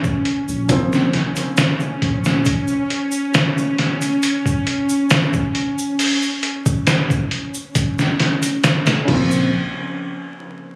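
A gritty, pitched-down sampler drum kit sits up front in this melancholic, hypnotic trip hop excerpt, its thumpy kick and medium-tuned snare joined by hi-hat, crash and a tube shaker over a bright, detuned, string-like drone with vibrato. A round sub bass surfaces from 0.5 s, and a mellow, felt-muted upright piano with harmonic tremolo and tape echo appears only briefly, at 0.7 s and again at 9.0 s. The piece sounds as if captured on a phone in the room, with vinyl crackle, compression and a lush hall reverb.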